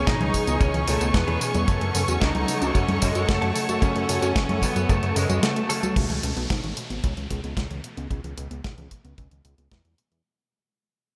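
A straight 4/4 pulse at 112 BPM drives this bittersweet, melodramatic italo disco excerpt in C# minor, with a tight, dry acoustic kick and a tape-toned, sampler-style drum machine of congas, hi-hat, snare and tambourine under a glossy, chorused synth bass and a warbling, dusty pluck arpeggio shimmering in the background. Over C#m7 and F#m, an overdriven lo-fi lead guitar carries the melody through a diffuse ambient delay, while a clear, focused string section holds bowed chords with vibrato and a very quiet clean direct guitar adds compressed picked stabs, all three stopping at 5.9 seconds. From 6.0 seconds an electronic downlifter enters as a filter sweep moves over the arpeggio and the whole dreamy, cathedral-soaked mix fades out.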